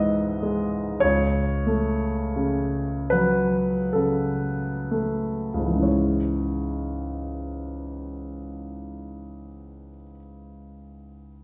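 In a triple metre played with free rubato, this brief excerpt from a romantic classical nocturne for solo piano carries a mournful, wistful mood, easing into a slowdown through its first 5.8 seconds before a new section begins. The grand piano sounds polished and present, spanning from deep bass to the upper middle register. A wet recital hall reverb makes it seem heard from further back in the room.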